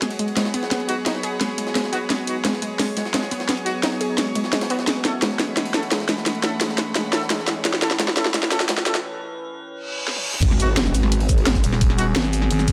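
Mechanical and futuristic, this dark technical drum and bass at 173 BPM in G# phrygian builds over an eerie metallic drone with a filter sweep, a punchy, warbling unison pluck arpeggio, a cracking up-front drum kit with a very quiet, gritty jungle sampler-style kit beneath, distant chamber strings and loose, clear brass stabs, then breaks at 9.0 seconds before a background reverse cymbal and impact lead into a drop at 10.4 seconds, where a knocking electronic kick and a wobbling, saturated growl bass arrive, followed by a thick FM growl bass at 11.6 seconds.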